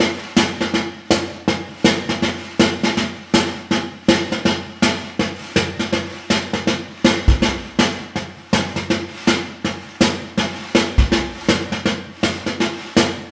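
A vintage brush drum kit comes in at 0.4 s and carries this down-home, cheerful country piece on its own, with brushed snare, hi-hat, punchy kick and a medium-tuned snare riding a swung eighth-note feel in 4/4. The kit sits up front with a rolled-off top, captured like a band playing live in one room and bathed in a wet stone room reverb. The part moves into a second section at 5.9 s and runs to 13.3 s, where this fragment of a longer piece ends.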